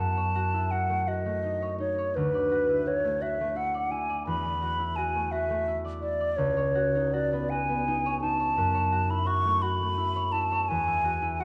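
Mysterious and wistful, this fragment of an impressionist classical duo in F# minor drifts in a rubato 6/8 at 56 BPM, as a pure, hollow, close-miked concert flute sings the tongued melody with vibrato up front while a mellow, ringing, fingerpicked concert harp accompanies through chords like F#m6, D69 and C#9sus4, all bathed in a wet recital hall reverb.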